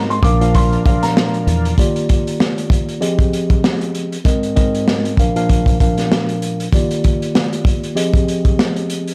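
A swung sixteenth-note groove in 4/4 drives this short, soulful boom-bap hip-hop clip, carried by a crunchy breakbeat kit that sits up front with a punchy kick, a medium-tuned snare, hi-hat and a dark, saturated, rolled-off top. A mellow tine electric piano, clean and direct with a cassette-tape tint, plays the accompaniment from the very start through to 9.1 seconds. In the opening moments a deep dub fingered electric bass adds round, foam-muted low notes, a clear, woody upright piano places a brief high melody touched with tape echo, and an overdriven tonewheel organ holds thick, gritty chords in the background with key click, chorus vibrato and a slow rotary speaker. All three of those parts drop out by 1.8 seconds. From there only the drums and the electric piano carry on. The harmony moves through major-seventh, minor-seventh and add-nine colours, and the small room ambience, transformer saturation and vinyl crackle give the whole recording a dry, gritty hardware character.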